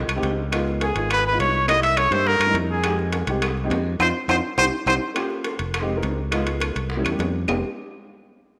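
Sultry and fiery, this brief Afro-Cuban jazz passage in F minor moves at a brisk 207 BPM in a straight 4/4, cut from a longer piece. A growly, punchy fingered electric bass sits up front alongside a dark, woody upright piano with short sustain, both running the length of the clip through a minor progression that leans on dominant chords with altered tensions. Ringing, close and dry timbales lead the percussion, while tight, high-tuned bongos and vintage, band-limited claves sit farther back in the background. At 0.8 seconds a clear trumpet with light vibrato takes the solo melody, joined an octave higher by a second line from a breathy, very quiet jazz flute, and both drop out near 5.0 seconds. A band accent and a drum fill arrive just before the harmony shifts at 5.2 seconds, and a moderate echo-chamber reverb gives the ensemble a roomy studio sheen.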